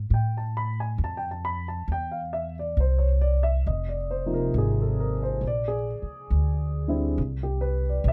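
A woody, thumpy pizzicato upright bass opens this tender, romantic jazz ballad excerpt, joined almost at once by a dark, mellow baby grand piano whose worn tone rings with long sustain. Both instruments sit up front in a dry, close sound, moving at a slow, swung pace through Am, Fm7, Bbadd9 and an open Cmaj7 voicing that arrives at 7.2 seconds as the passage breaks off.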